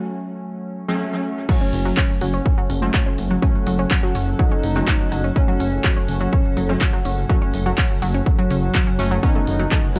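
Melodic techno at 124 BPM in F# dorian, hypnotic and dark. A brassy synth stab plays alone behind a filter sweep until the drop at 1.5 seconds, when a heavy, tape-warm kick, smooth-hatted drums with handclaps, shaker and crash, lush punchy unison pluck arpeggios and a smooth portamento lead with vibrato all arrive together, with a deep rumbling detuned saw bass following at 1.7 seconds, much of it pumping under sidechain. An evolving, morphing wavetable pad with phaser and a very quiet, swarming granular drone fill in behind them, and a barely audible, woody bowed string section surfaces at 9.2 seconds under light digital ambience.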